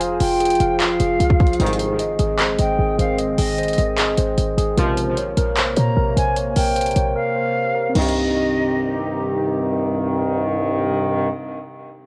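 Dark, menacing trap hip hop at 151 BPM in a half-time feel, set in C phrygian and cut from a longer piece, moves through Fm, Ab and Bbmadd9 before settling on Cm. A deep, moody analog pad holds sustained chords under chorus and phaser, while a mellow tine electric piano plays arpeggios through a low-pass filter and tape echo, sounding as if heard through built-in speakers. The trap kit sits up front with a hard-clipped kick, metallic hi-hats, handclaps and crash cymbal, and a punchy, tight 808-style bass with a sine body and noise layer decays under it. An airy concert flute carries a distant, expressive second line with vibrato, and a brass ensemble in classical style punches short stabs at 1.6 and 4.8 seconds before returning from 8.0 seconds to the end. The drums drop out from 7.2 to 8.0 seconds, and the whole piece has the character of a home cassette recording with light reverb.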